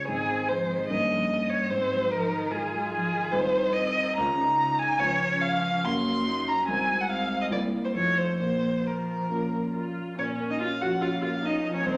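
A violin, viola, cello and grand piano sound together from the start of this quick, restless classical-period excerpt for piano quartet, its rubato pulse moving at 129-150 BPM in 4/4 and settling into Bb minor from 3.3 s. Up front, the warm violin carries an expressive bowed melody full of vibrato and portamento. Beneath it, the rich viola adds expressive accompaniment, the smooth, even cello carries a distant second line in the background, and the piano's present tone rings with long sustain, all inside a wet recital hall reverb before a new section begins at 10.2 s.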